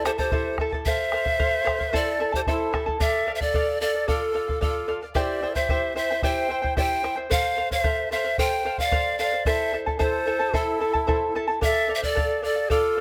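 This Andean folk excerpt, cut from a longer piece and set in a straight two-beat metre, feels festive yet tinged with melancholy. A breathy bamboo pan flute carries the melody up front, its tongued notes marked by a bright chiff and vibrato. Beneath it, a large wooden quena plays a reedy second line from a distance, treated with tape echo. An acoustic charango, also up front, fingerpicks a shimmering accompaniment on its double strings, some of them octave-doubled. A round, close and dry bombo enters at 0.1 seconds and stops at 12.8 seconds, while light reverb and detailed close miking keep the ensemble clear as the minor-leaning harmony shifts into a new section at 3.0 seconds.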